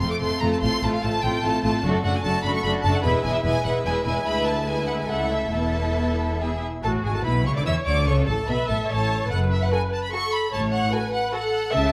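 A cheerful, spirited string orchestra opens at once with all five sections bowing together in a quick classical-period movement in 3/4, around 147 BPM, in A major, its pulse handled with rubato. High above, the first violins carry the melody between E5 and E6 with a clear, focused tone and lush vibrato, while a second violin section beneath them adds a rich, close-sounding inner line that stops at 11.4 seconds. The violas fill the middle with smooth, even accompaniment. The bass is shared by a somewhat distant, clear cello section and a close, rich double bass section reaching down to E1. The harmony moves from F through D/F# and E7/D toward a suspended E before the second section begins at 6.8 seconds on A and turns to F#m. A moderate recital hall reverb gives the ensemble a sense of space, and the passage breaks off at 11.9 seconds as a fragment of a longer work.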